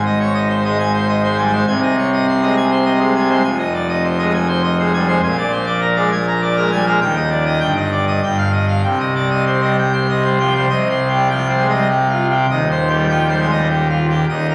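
In a straight triple metre, this dramatic, majestic classical organ toccata unfolds as a fragment of a longer piece, with a solo pipe organ on full registration whose brilliant mixtures and romantic voicing sit up front. The harmony moves from Ab through Fm7 and Bb7 to Eb before settling on Cm, and a new section arrives at 10.7 s. Captured on a phone in the room, the sound is bathed in a wet recital-hall reverb with a club-like ambience.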